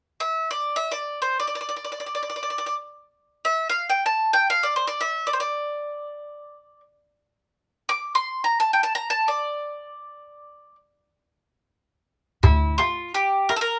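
This Turkish makam ensemble piece, cut from a longer performance, unfolds in free time in D makam ussak with a soulful, melancholic mood. A bowl-back mandolin carries the melody from 0.2 seconds, its picked double strings sounding mellow and up front as the line ranges from an E4 lowered by 30 cents up to D6. For most of the passage the mandolin plays alone. At 12.4 seconds an upright bass enters briefly with a woody, dark pizzicato D2 on steel strings, placed up front in the mix. A metal-shelled darbuka arrives at the same moment, its large, deep body struck with hard hands for a crisp, close and dry accent. Light reverb gives the ensemble a touch of space as the music turns into a new section just before the cut.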